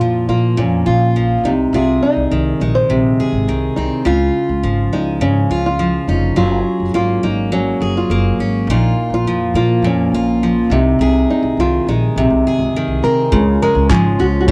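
A straight 104 BPM pulse in 4/4 carries this carefree, heartfelt acoustic pop excerpt in Db major, where a dark, fingerpicked nylon-string guitar sings the melody over an up-front, full-bodied picked steel-string dreadnought with old strings and a growly pizzicato upright bass, until at 13.3 s a clear, polished grand piano in the background and a cloth-damped, thuddy drum kit with a tight kick and handclaps join, the piece captured as a home recording on cassette with light reverb.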